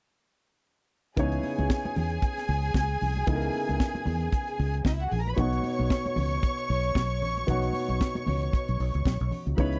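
Disco with a glamorous, danceable mood, this short excerpt moves at 114 BPM in 4/4 with a lightly swung sixteenth-note feel, set in C# dorian and shifting from C#m9 to B at 5.4 seconds. A tight funk drum kit sits up front, its high-tuned snare and tight kick sounding polished and airy alongside the hi-hat. A fingered electric bass, round and punchy with a foam-muted tone, holds the low end up front. A lush bowed violin section carries a smooth second line with even vibrato, while an intimate grand piano supplies accompaniment with its action noise audible. Very quiet congas add ringing, high-tuned color under soft hands, and the whole dry, close studio sound recalls 1970s recordings.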